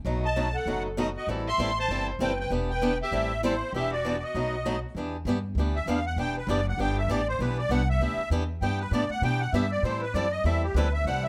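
A woody, thumpy upright bass on gut strings opens this fiery excerpt of acoustic string swing in E minor, joined almost at once by a bright, boxy picked guitar and a reedy musette accordion carrying the melody, all three sitting up front at a swinging 196 BPM. A bowed violin adds a distant second line with vibrato, portamento and a soft attack, heard only until 4.8 seconds. The chords move through B7, Am7, Em7 and Em9 before settling back on Em7 as the second section arrives at 5.0 seconds. From there the accordion, its shimmering musette tuning bathed in plate reverb, takes a solo over bass and guitar through to the cut at 11.3 seconds. Close, detailed microphones and a light room reverb keep the sound intimate and present.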